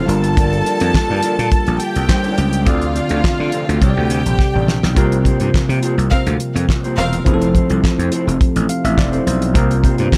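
Sultry, danceable disco at 104 BPM in a dry room, with a damped 70s drum kit of fat snare, tight kick, hi-hat and handclaps up front beside a growly, overdriven slap bass, while a barky, bell-like tine electric piano comps and takes a fill at 8.4 seconds, a mellow electric guitar sits back in spring reverb, a very quiet dark French horn section holds chords, and a soft, bowed string section with tape echo plays a second line until 7.2 seconds, over chords moving from Gm7 to Dm7 and Csus2, then, after a drum fill at 4.4 seconds, to C7sus4 and Fmaj7.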